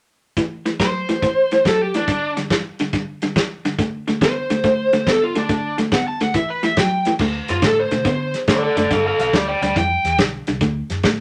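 A slightly broken-up, lo-fi rhythm guitar riff and a dark, smooth soul drum kit with a tight kick and dusky cymbals open this laid-back, soulful electric blues shuffle at 0.4 s, swinging at 140 BPM in D mixolydian, as an up-front, overdriven lead guitar from a small cranked amp carries the melody, a slide guitar played with fingerpicks adds a brief second line from 5.9 s, and a round, punchy, foam-muted bass enters at 7.2 s, within a light reverb.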